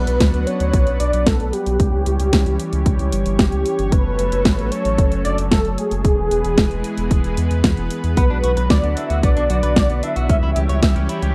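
Italo disco with a bittersweet, danceable mood, where a thick, detuned unison lead carries the melody through cassette tape and tape echo over a lush, chorused pad with vintage 12-bit sampler grit, a round, deep analog bass up front, a punchy electronic kick and a house kit with a cracking snare and hi-hat, while a clean, direct-recorded electric guitar adds picked arpeggios with tape echo from 8.2 seconds in a dry, close 1970s-style studio sound, in this short cut from a longer piece.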